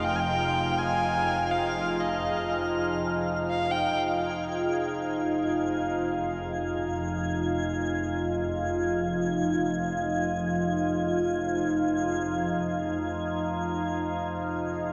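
Ambient and serene, this spacious passage cut from a longer piece sets a rich, bowed electric violin melody with vibrato and portamento, heard only until 4.0 seconds through shimmer reverb and delay, over an evolving, detuned wavetable pad of dark, phased, sustained Fm7 chords held up front, a lush bowed double bass section on a low F that fades out across the whole 14.9 seconds, and a sparkling granular texture of octave-up shimmer high above, all set within a huge, wet reverb.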